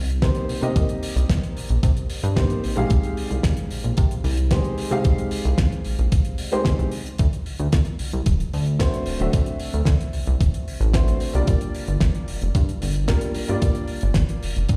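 A straight groove in 4/4 drives this sleek, groovy nu-disco fragment, anchored by an overdriven, thumpy electronic kick that sits up front with a sampler-style punch, re-recorded in a small room. Beside it, a damped 70s drum kit adds hi-hat and a fat, dry acoustic snare, mixed lower than the kick. A chorused synth bass carries the low end from the very first moment, its retro, glossy tone blending pulse and sawtooth waves with pulse-width modulation, ring modulation and a fast filter pluck, all warmed by tube saturation into a mellow, sustained presence near the front. A warm, worn grand piano enters at 0.2 seconds as accompaniment in the middle register, intimate, boxy and short in sustain, with audible action noise and a touch of analog delay. The harmony moves from Cm7 to D7 at 6.9 seconds and settles on Gm7 at 11.5 seconds. The whole mix sounds as if played over a big sound system in a bare room, with a large studio reverb lending space around the parts.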